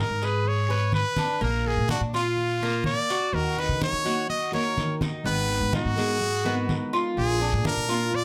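A moderate studio ambience frames this short cut from a danceable Cuban son and guajira piece at 125 BPM in straight 4/4, where a brilliant, close-miked trumpet leads up front with a punchy, forceful melody and vibrato over a metallic, double-strung Cuban tres playing picked arpeggios. Underneath, a woody, thumpy pizzicato upright bass on gut strings anchors the Abm, Bb, Ebm and Abmadd9 changes, while low-tuned, damped congas played with soft hands and a very quiet, raspy guiro join within the first half-second. At 3.3 seconds a dark, full-bodied fingerpicked steel-string jumbo guitar adds accompaniment, deepening the warm mood.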